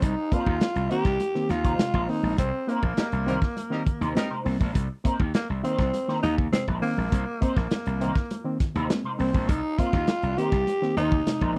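Sly and cool, this short funk excerpt from a longer piece moves at 101 BPM in a straight 4/4, sitting on a C minor seventh chord. A growling tenor saxophone carries the melody up front, breathy and raspy with a subtone, soft attacks, scooped notes and jazz-style vibrato. Beneath it, a gritty slap bass with overdrive sounds punchy, while a reedy, barky electric piano, lightly overdriven through its built-in speakers, supplies stabs. A crunchy breakbeat kit of kick, snare and hi-hat sounds saturated and dark with a rolled-off top, joined by very quiet, thick-skinned congas played with soft hands. An envelope-filtered electric guitar enters at 0.3 seconds with twangy wah and analog chorus, and a clear, tight horn section adds a brief second line between 3.0 and 4.3 seconds during a band accent. The whole sits in a dry, close 1970s-style studio sound with a touch of reverb.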